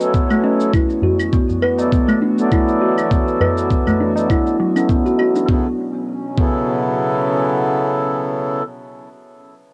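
Earthy and mystical, this organic downtempo fragment in B minor moves at 101 BPM with a lightly swung 16th feel, built on a thumpy, gritty electronic kick sitting up front, gritty shaker and claves, and a ringing, high-tuned tabla heard close. A reedy, nasal, breathing harmonium carries the chords under a filter sweep, with sidechain pumping, tape grit and analog delay, while woody, hollow kalimba arpeggios add dark, short thumbnail plucks and a warbling, detuned pad with chorus, phaser and reverb hangs mellow and nostalgic in the background. The beat and kalimba fall away by 6.6 seconds, leaving harmonium and pad to hold a Bsus2 from 5.5 seconds in a small, booth-like cassette room.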